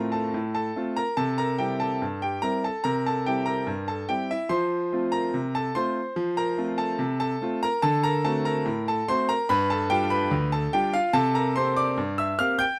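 A clear, natural concert grand piano sits up front in light reverb, its deep bass anchoring a cheerful, lively ragtime excerpt in F major at 72 BPM in straight 2/4, playing solo across a span from D2 to G6 through a progression of F/A, C7, F, D7, G7 and back to C7 over 12.8 seconds.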